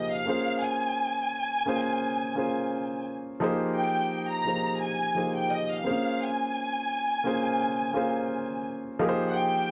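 Soul at 86 BPM in a straight 4/4, bittersweet and silky, this short excerpt cut from a longer piece pairs a lush, bowed violin section carrying the melody with a grand piano in accompaniment, both up front and playing throughout its 9.7 seconds. The strings sing with expressive vibrato while the piano supports them through a cycle of Bbm9 and Fm11 chords. A moderate plate reverb with a 2.6-second decay wraps the dark, warm production.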